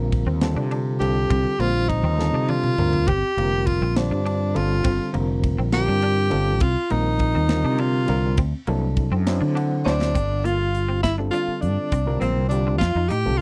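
Driving and nocturnal, this electric jazz fusion excerpt moves at 68 BPM in a straight 6/8, centered on G minor and tuned to A4 = 439 Hz. A gritty, overdriven reed electric piano with fast tremolo, played through a combo amp, carries the accompaniment over a fretless electric bass that sits direct and up front. A modern studio drum kit adds bright cymbals, a medium-tuned snare and a punchy kick, while a semi-hollow electric guitar drops clean, picked stabs with ensemble chorus in the background. A clear tenor saxophone with light vibrato enters at 1.0 s and takes the solo, and a dark, fingered hollow-body jazz guitar joins with a second line at 9.9 s. The harmony moves through Cm11, Gm11 and D7 before a new section at 10.2 s brings Gm11, Csus2 and F13, with drum fills and an electric piano fill marking the way. The sound is dry and close, in a 1970s studio style.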